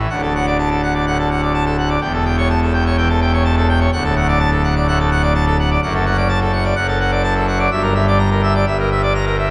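A pipe organ at full registration, mixtures blazing, plays alone up front, majestic and brilliant in a romantic voicing that reaches from the deep pedal register to bright upper pitches. This stormy, dramatic classical toccata moves in a straight 4/4, passing from D through A7/E, back to D, then D/F# and on to Em7b5/G. It is a short cut from a longer piece, bathed in a long, wet church reverb.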